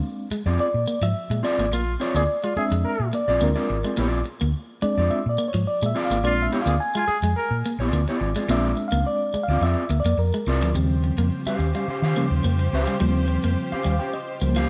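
A straight, even 4/4 funk groove drives this gritty, strutting passage, cut from a longer piece, anchored by a round, dark hollow-body short-scale bass played with the fingers and sitting up front in the mix. A reedy, mellow electric piano with a fast tremolo, heard through its built-in speakers, plays stabs and takes the lead as the featured solo voice through the first section, then adds a short fill near the close. Beneath it, a clean, picked electric guitar repeats a riff bathed in spring reverb, while a second, darker guitar, fingered and warmed by tube saturation, supplies accompaniment. A bright, vintage-toned trombone with light vibrato plays a second line from 1.7 to 7.6 seconds, its notes doubled by slapback echo. When the harmony moves from Bb9 to Eb13, a lush, woody studio string section enters at 10.7 seconds with bowed, sustained chords, all within a light room reverb.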